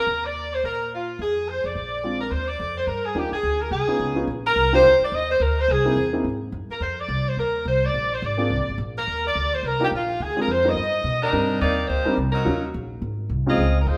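A bright, up-front saxophone section carries the melody from the first moment with light vibrato, joined almost at once by a woody, thumpy pizzicato upright bass in this joyful big band swing excerpt at 213 BPM in Eb major. An intimate baby grand piano, its action noise audible, adds accompaniment from 2.0 to 6.2 seconds and again from 8.4 seconds, while a large studio reverb gives the sound a wet, roomy sheen.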